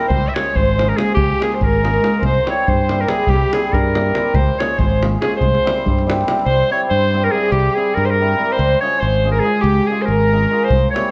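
Heard through a moderate recital-hall reverb, this restless, fiery stretch of a Balkan wedding-band tune moves in a quick 5/8 at 283 eighth-note beats per minute, straight in feel and set in C phrygian dominant. A bright, vintage clarinet carries the melody up front in a classical solo style, touched by a slapback echo. A single bowed violin sits more distant behind it as a second line, with a dark, nasal, reedy gut-string tone in a period manner. A hammered acoustic cimbalom shimmers and rings through the accompaniment, while a fingered electric bass stays direct and prominent. The harmony rocks between Db and C. A tight, compressed, saturated davul drives the percussion until about 6.4 seconds, drops out, and returns at 10.7 seconds just before the cut.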